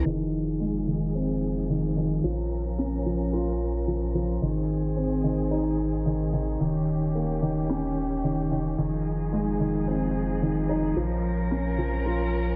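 A felt-muted upright piano sits up front with a soft, intimate riff, its mellow tone shaded by tape echo and a filter sweep across the 12.6 seconds of this cinematic, melancholic piano and strings electronica piece in F minor at 110 BPM. Beneath it, a bowed string quartet with woody vibrato holds sustained chords through Fm7, Bbm, Ab and Eb7, while a round, deep analog bass with a slightly nasal edge anchors the low end. The dark production wraps the parts in a moderate echo chamber reverb and small room ambience, lending the whole a close, chamber-like feel.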